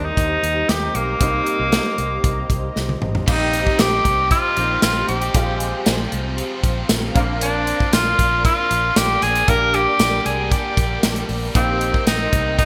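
This glossy, romantic 1980s-style pop excerpt opens with an up-front, clear tenor saxophone carrying the melody through a touch of delay. Beneath it sit a polished baby grand piano with ensemble chorus and a dark, sawtooth string-machine cello pad with soft attack, both tucked into the background. A round, foam-muted fingered electric bass anchors the low end at 116 BPM in a straight 4/4, and a studio drum kit arrives at 0.2 seconds, its gated reverb framing a punchy kick, medium-tuned snare, hi-hat, tambourine, toms and crash. A drum fill at 2.8 seconds leads into a new section at 3.3 seconds, where a tight, bright distorted guitar with chorus joins in the background. The harmony moves through Cm7, Fmadd9 and Bbadd9 over a Bb bass, while the saxophone's vintage, scooped phrasing stays in front. A moderate plate reverb and bright digital production give the piece a sleek sheen.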